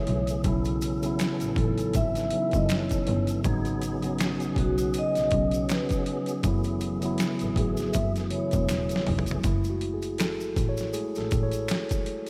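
A dreamy, reverb-soaked mix in a lush hall frames this sultry, introspective neo-soul R&B excerpt at 80 BPM in F# dorian, with a swung 16th feel and chords moving from B9sus4 through G#m7 to F#m9. A soft-mallet vibraphone carries the ringing, metallic melody with delay over a mellow, clean tine electric piano, a fat, lightly overdriven tonewheel organ with key click, chorus vibrato and slow rotary speaker, and a distant, bowed double bass floating beneath. A gritty, pitched-down boom bap kit with a thumpy kick sits up front, maracas and finger snaps linger in the background, and after a drum fill the electric piano takes a solo from 9.4 seconds.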